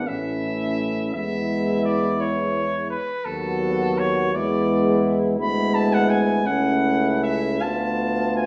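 From the first moment, a tender, lyrical classical brass band hymn unfolds in a rubato 6/8 at about 56 BPM, with a warm, soft-edged cornet singing the melody up front with light vibrato over a mellow flugelhorn second line, a clear euphonium set back in the background, a close-miked second euphonium, and a tuba bass. The distant players sit in a wet stone room while the harmony moves from A through E and B7/D# to a closing Bm7b5/D in this 8.5-second passage cut from a longer piece.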